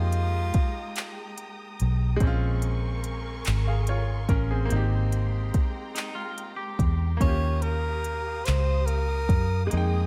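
Slow, sultry R&B in a straight 6/8 at 48 BPM, this yearning excerpt moves through lush extended chords over a punchy, round, foam-muted electric bass and a smooth, produced drum kit of soft kick, handclaps and hi-hat set up front, while a brilliant grand piano with short sustain and a distant bowed string section with vibrato fill in the harmony. A breathy, close-miked tenor saxophone sings jazz-style phrases with scooped notes at the very start and again from 7.2 seconds. Just before its return, a clean fingered electric guitar adds a brief second line bathed in spring reverb at 5.9 seconds, all in a reverberant studio space.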